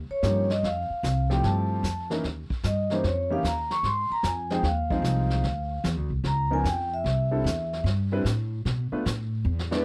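A swung 4/4 pulse with a lilting eighth-note feel drives this short cut from a longer small-group jazz piece in the swing and bop vein, and the mood is playful and warm. The pizzicato upright bass opens at 0.0 seconds with a woody, up-front tone from steel strings, and the vibraphone, piano and brushed drum kit join almost at once. The vibraphone solos throughout, its soft mallets and motor-off setting giving a mellow, ringing, metallic voice over the band. The grand piano accompanies with an intimate, natural sound, long sustain and audible action noise, moving through rich extended harmonies, while the vintage kit sits lower in the mix with brushed snare, hi-hat and a tight kick, its top rolled off in a small room. A short drum fill at 9.5 seconds closes the passage, and the recording sounds dry and close, like a 1970s studio date.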